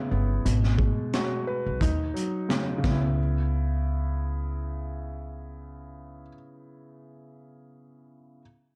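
Boom-bap hip hop at 88 BPM in 4/4 with a light 16th-note swing, set in C# minor and tuned to A4 = 443 Hz. This short cut from a longer piece feels tough and moody. A dark grand piano carries the accompaniment throughout, mellow and worn with audible action noise and long sustain, filtered and run through cassette tape for an intimate, aged color. A woody pizzicato upright bass on steel strings sits low and up front, while a crunchy breakbeat kit with punchy kick, high-tuned snare and hi-hat plays from 0.5 to 3.0 seconds, saturated and gritty with a rolled-off top. The harmony moves through G#m7, D#m7 and C#m7, and a second section begins at 3.2 seconds, all captured in a close, dry mix with little reverb and a warm overall production.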